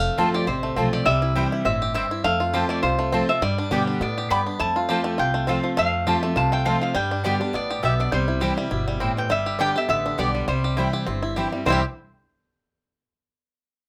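A nasal, metallic slide melody from fingerpicked lap resonator guitar opens this joyful, lively bluegrass excerpt at 204 BPM with a swung feel in C major, over an up-front picked dreadnought acoustic guitar, twangy, percussive banjo arpeggios and a thumpy, woody pizzicato upright bass, with double-strung mandolin stabs joining at 0.2 seconds, all set in a small, moderately reverberant room.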